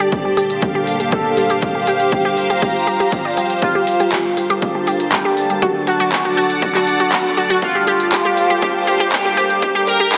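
Set in a dense, heavily limited mix bathed in a lush hall reverb, this melancholic, hypnotic melodic techno build-up in G minor at 120 BPM pulses with sidechain pumping across most of its parts as a bright, resonant sawtooth polysynth melody and a punchy, detuned unison pluck arpeggio both ride filter sweeps and digital delay over a deep, moody pad with a slow attack and 12-bit sampler grit, clear bowed symphonic strings with vibrato, an overdriven, up-front kit of handclaps and smooth hi-hats, and a dry, punchy electronic kick that enters at 0.1 seconds, all moving through Gm7, Fsus4 and D chords.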